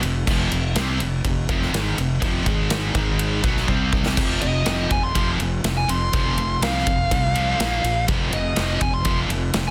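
This powerful, swaggering hard rock excerpt opens with the full band at once: a scooped, high-gain guitar and a sludgy overdriven guitar sitting in the background both play the riff, over a round, punchy fuzz bass and a big acoustic drum kit. The kit is up front in a studio room, with boomy kick, medium-tuned snare and bright crash and ride cymbals. The riff moves through F5, Ab5 and B5 chords before a drum fill at 3.7 seconds launches the second section on F5. At 4.4 seconds a bluesy, warm lead guitar with distortion takes a solo in its high register, riding over a shift to Bb5 and back to F5. The mix is dense and heavily limited with light reverb, and the dark, fuzzy low end pushes hard beneath the picked guitars.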